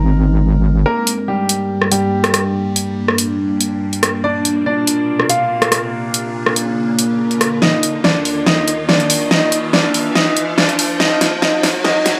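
A lush hall reverb wraps this excerpt of heavy wobble dubstep, with a high-pass filter trimming its low end. It moves at 142 BPM in a half-time 4/4 feel in G phrygian, and the mood is menacing. A saturated, up-front wobble bass growls on a single Ab only for the opening 0.8 seconds, and its square-and-sine tone is thickened with chorus and overdrive. An evolving wavetable pad sustains chords underneath, its bright, morphing texture phased and bathed in its own reverb. Above, a natural-sounding concert grand piano carries the melody with deep bass and a tape echo. From 1.1 seconds an overdriven, layered electronic drum kit drives a build-up with a huge snare, rim clicks and bright hats, and a background riser enters from 3.0 seconds as the chords move from Gm through Bb and Ebsus2 back to Ab.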